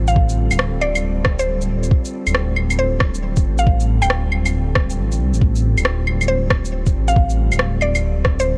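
Future garage at 137 BPM in D minor with a 64% swing on the sixteenths, this ghostly, melancholic excerpt rests on a single Dm7 chord, where a warbling, lo-fi pad with chorus, reverb and sidechain pumping holds sustained chords over a deep, rumbling detuned saw bass with tube saturation, while a woody, round mallet-like synth pluck carries the melody through chorus and tape echo above up-front electronic shaker, claves and rim click and a soft, tape-touched electronic kick that enters at 0.2 seconds, all set in a digital ambience.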